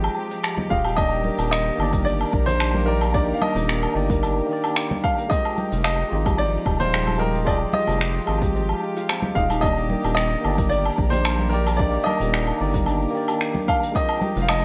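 Smooth and blissful, this sunset chillout passage in Eb major moves at a relaxed 111 BPM in straight 4/4, swaying between Fm9 and Ebmaj7. A brilliant grand piano carries the melody with short sustain and digital delay over a clean tine electric piano, while a reedy, gut-toned chamber string section with light vibrato and a fingerpicked concert harp sit in the background. A round, deep analog bass stays up front, and a distant, roomy brush kit with cabasa, finger snaps, hi-hat and woodblock plays from the start. Close, dry congas come in at 0.6 seconds, and a punchy layered electronic kick enters at 0.7 seconds, all in a small room with light reverb.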